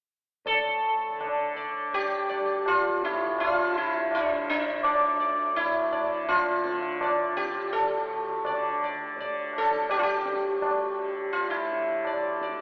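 Heard through a narrow, telephone-like filter and bathed in a long cathedral reverb, this short Hindustani classical excerpt seems to hang in a vast, echoing space. The mood is meditative and solemn, with a straight feel in a five-beat metre. A warm, softly plucked tanpura drone opens at 0.4 seconds, its shimmering tone sitting low beneath everything else. At 0.5 seconds the sitar takes up the melody, sitting up front with a bright, round, plectrum-plucked tone that buzzes and rings with sympathetic strings. Low-tuned, ringing tabla enters at the same moment and sounds distant, as if set back in a large room, and all three parts carry on together until the fragment breaks off at 12.6 seconds.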